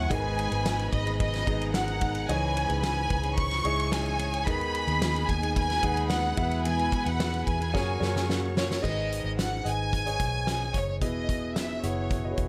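Piano-driven pop in G# minor at 110 BPM, this dramatic, bittersweet passage is cut from a longer piece and moves through a G#m, C#madd9, G#m/D#, E and F#add9 progression before settling on G#m and Emaj7. An up-front violin section carries the melody with lush, vibrato-rich bowing, while a second violin section sits in the background with a digital delay, tracing its own line until 8.8 seconds. A concert grand piano supplies intimate accompaniment with deep bass, long sustain and audible action noise, and a jumbo steel-string acoustic guitar plays a full-bodied fingerpicked riff underneath until 8.8 seconds. A vintage fingered electric bass adds a dark, foam-muted, round low end. A roomy, distant indie drum kit with a fat snare and punchy kick enters at 0.1 seconds and plays a fill from 7.7 seconds into the second section at 8.8 seconds, all set in a light reverb.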